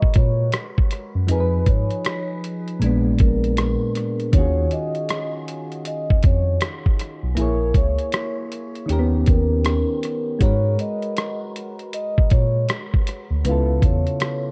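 Nostalgic and hazy, this lo-fi hip hop fragment rides a swung sixteenth-note feel, with a muffled, pitched-down sampler-style drum kit of thumpy kick, hi-hat and rim click sitting up front beside a clean, direct tine electric piano that carries the bass line. Round, gentle synth keys with a triangle-and-sine tone fill in lush minor-eleventh and altered seventh chords, coloured by chorus, phaser and cassette-tape wear. A ringing vibraphone, played with soft mallets and slow motor vibrato, carries the melody through an analog delay, and the sound is set in light digital reverb with a cassette tape character.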